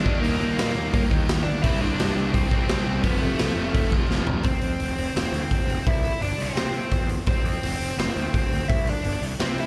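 Heard live through a venue's PA with a recital-hall sheen yet little reverb, this rowdy, energetic punk rock excerpt at 170 BPM sets an up-front, gritty garage drum kit with punchy kick and a pumping stone-room ambience against a growly fuzz-picked electric bass, while a biting overdriven guitar carries the melody with slapback echo over two background riff guitars, a bright cranked stack and a sludgy distorted one, both of which drop out by 4.9 seconds after a drum fill ushers in a half-time feel at 4.4 seconds over chords moving from Eb through C and F.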